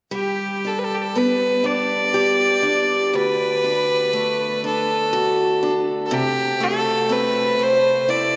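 A clear, biting single fiddle with light vibrato and an airy bow carries the melody up front from the start, over a boxy picked acoustic archtop guitar, in this tender, nostalgic Celtic slow air in G major at a rubato 40 BPM in 6/8, moving from G to D at 3.1 seconds and Am/C at 6.1 seconds beneath a long cathedral-like reverb in a church or concert hall, cut from a longer piece.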